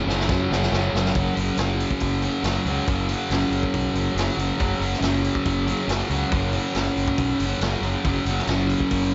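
Lightly reverberant and capped at 7.7 kHz, this menacing, swaggering garage rock excerpt moves at 139 BPM in straight 4/4, with a bright, double-tracked fuzz guitar riff on an F#5 chord up front over a round, punchy overdriven fingered bass, while a gritty, saturated small-room breakbeat kit opens with a drum fill before the next section begins at 1.2 seconds.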